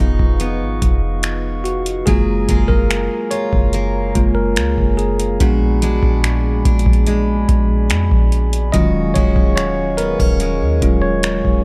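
A straight 4/4 pulse at 72 BPM from a booming analog drum machine, with its deep kick, metallic hi-hat and finger snaps arriving at 0.2 s, anchors this late-night, longing contemporary R&B excerpt in Eb minor, where a soft, round 808-style bass sits beneath a bell-like, up-front tine electric piano soloing throughout over bright picked steel-string acoustic guitar arpeggios and the glassy, ethereal sustained chords of a glass harmonica, set in a dark production with digital ambience.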